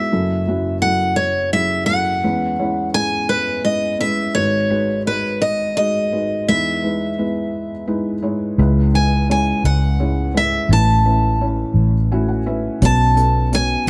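A bright, picked steel-string acoustic guitar carries the melody up front in this hopeful, tender acoustic folk-pop ballad, its fresh strings and finger squeak set over a felt-muted upright piano whose soft, mellow accompaniment and audible action noise give an intimate feel at 57 BPM in a straight 6/8. At 8.6 seconds a dark, round, foam-muted electric bass enters with a punchy, amped tone, and at 12.8 seconds an airy acoustic drum kit played with bundle sticks adds hi-hat and a punchy kick. The harmony moves through F#m7, C#m7/E, G#m7 and Emaj7 before shifting to C#m7, Aadd9 and Bsus2, all in a dry sound in this excerpt from a longer piece.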